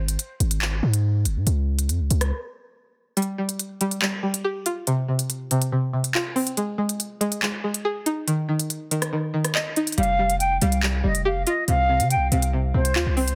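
Ominous and menacing, this cut from a longer drill track moves at 141 BPM in 4/4 with a half-time feel in F minor. It opens on a break in which a punchy, heavy 808-style sine bass with a noise layer and fast, decaying hits sits up front, while an electronic drill kit of handclaps, crisp hi-hats and rim clicks, re-recorded in a large room, runs throughout. At 3.2 seconds a twangy, warbling, vintage resonator pluck enters with a bright sawtooth edge, treated with chorus, phaser and a low-pass filter sweep over Fsus2, Csus4 and Ab5 chords, while the kick drops out until 10.0 seconds. At that point the bass returns and an airy concert flute takes the melody, expressive and tongued with vibrato, set distant through a low-pass filter and digital delay. The dense, heavily limited modern master wraps the parts in digital ambience.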